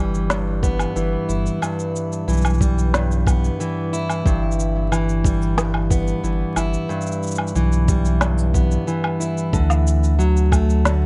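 Through a haze of vinyl crackle and a dulled top end, this hopeful folktronica excerpt in G major at 91 BPM sets a boxy, up-front fingerpicked parlour steel-string guitar playing delayed arpeggios over a round, deep sine sub bass, with a soft, tape-toned electronic kick arriving at 0.6 s alongside an electronic shaker, woodblock and woody snare re-recorded in a small room, as the harmony moves from G6 to Dadd9 at 9.5 s.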